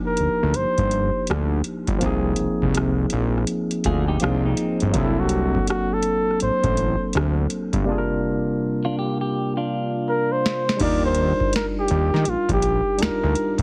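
The excerpt opens on a barky tine electric piano with a touch of overdrive, joined almost at once by a bucket-muted trumpet carrying the melody in a veiled, mellow voice with light vibrato and a slapback echo. A fat, detuned sawtooth analog bass sits up front with a filter sweep, while a booming analog drum machine supplies a deep kick, tonal snare, rim click, metallic hi-hats and crash cymbal. This is soulful, late-night neo-soul R&B at 82 BPM in 4/4, with a swung sixteenth-note feel and the harmony moving through chords such as Cm11, Ab69 and Gm7/C. A clean, fingered electric guitar with spring reverb adds a compressed second line from 3.9 to 10.6 seconds, and a drum fill at 10.1 seconds leads into a new section landing on Ebmaj9 at 10.8 seconds. The whole mix carries light reverb and a heavily compressed, radio-like sound.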